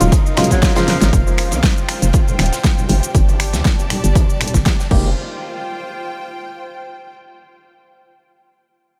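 Hypnotic and deep, this deep house excerpt at 119 BPM rides a punchy, overdriven electronic kick and a hollow, knocking FM bass pumping beneath mellow organ stabs, a fat-snared overdriven drum kit with snaps, shaker and crash, a very quiet tight metal kit, distant ringing congas, a faint silky analog string pad, a biting symphonic string section carrying on alone to 7.1 seconds, and a brief bright tenor saxophone solo with diffuse ambient delay from 0.5 to 1.1 seconds over Ebm11 and suspended ninth chords.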